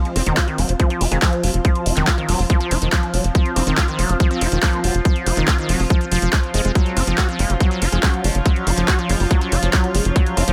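A driving 141 BPM straight 4/4 psychedelic trance groove, cut from a longer piece, sets an overdriven, up-front electronic kick and an overdriven drum and bass kit of handclaps and bright hi-hats under a tight, punchy sequencer bass, a squelchy, resonant liquid acid bass riff with chorus and digital delay, a very quiet metallic wobble bass second line, an overtone-sweeping drone of sustained chords with phaser entering at 0.6 seconds, and a cloudy granular pad in the background, creating an alien mood over chords moving from F5 to Gb5 at 6.8 seconds in a lightly reverberant room.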